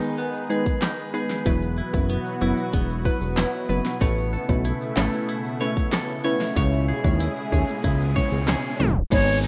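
A punchy, layered pop drum kit sits up front from 0.7 seconds, its fat snare, handclaps, hi-hat and kick carrying a bouncy, hypnotic dancehall groove at 94 BPM in a straight 4/4. A thick, detuned analog bass joins at 1.5 seconds, equally forward, its sawtooth-and-square tone shaped by a filter sweep. Around them, a crystalline wavetable pluck and a lush unison pad pump in time with the beat, the pluck shimmering with chorus and the pad swirling with chorus and phaser over sustained chords that move from G#m through Esus2 and Aadd9 to C#m. A twangy, clean electric guitar picks arpeggios underneath, an egg shaker adds a soft, saturated rustle, and a riser and downlifter stir in the background near the end. After a tape stop, a bright, airy concert flute with a reedy edge and vibrato sounds a single tongued C#5 at 9.1 seconds, just as this cut from a longer piece ends. The mix is dry and rough, with the feel of a home demo.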